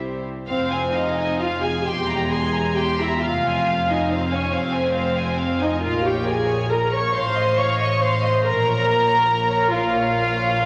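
A dark, up-front viola section carries the accompaniment in this slow, romantic movement for string orchestra, its soft-attack sul tasto tone pure and floating. In F minor at 45 BPM in 6/8, with uneven beats and rubato, the music feels yearning and melancholic as it moves through chords from Fm and C7/E to Bbm and F7/A. A chamber violin section plays an intimate second line with vibrato from the start, while the melody arrives at 0.5 s in a symphonic violin section, warm and close. Beneath them, a distant cello section and a rich double bass section share the bass. A wet scoring-stage reverb with a 2.0-second decay surrounds the strings, and the recording is cut from a longer piece.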